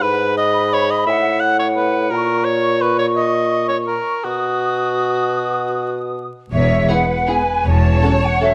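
A warm cor anglais sits up front at the start of this festive, elegant orchestral ballroom waltz in 3/4, moving with rubato beside an airy, distant flute section with crisp attacks and a mellow, punchy solo bassoon in accompaniment. At 6.5 seconds the strings enter with a focused viola section, a bright cello section and a rich, up-front double bass section, joined shortly after by a lush violin section carrying the melody in the background, a dark second violin line with portamento, and a roomy French horn section holding sustained chords. Captured with close, detailed microphones in a moderate recital hall with a touch of vinyl crackle, the clip is cut from a longer piece.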